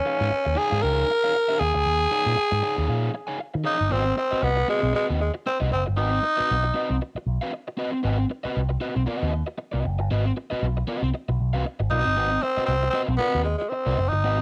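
This playful, gritty funk excerpt has the homespun sound of a cassette recording, wrapped in a light reverb. A growling tenor saxophone leads up front, raspy and bright with a light vibrato and a pop-style delivery; it falls silent at 7.0 seconds and returns at 11.9 seconds. Beneath it, a crunchy overdriven guitar supplies picked accompaniment, its tone colored by cassette tape. A picked electric bass runs through an envelope filter and tube saturation, sitting forward in the mix with a warm, amped character. The groove carries a lightly swung sixteenth-note feel, and the harmony moves from an Eb9sus4 to a rootless Ab7#9.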